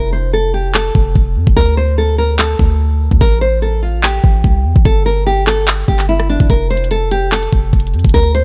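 A woody, fingerpicked nylon-string guitar with the worn character of old strings carries the melody in this triumphant yet wistful trap excerpt in F major, moving over F, D5, Am7 and Gsus2 before returning to F. A deep, boomy 808-style bass with a fast attack and a mellow, decaying sine tone sits up front from the start. At 0.7 s an electronic trap kit joins at 146 BPM in a half-time feel, with a knocking kick, bright hi-hats, handclaps and rim clicks, all in a dry, close mix.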